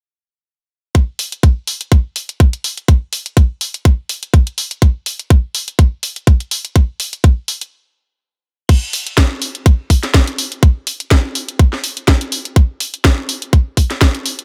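A 4/4 house groove at 124 BPM with a 55% swing on the sixteenths drives this aggressive, swaggering cut from a longer piece. An overdriven electronic kick drum with a tight, up-front punch runs from 0.9 seconds alongside a layered garage drum kit of hi-hat, crash cymbal and a cracking, overdriven snare. After a stop at 7.7 seconds, the groove returns at 8.7 seconds for a second section, and the dry sound keeps the hits immediate.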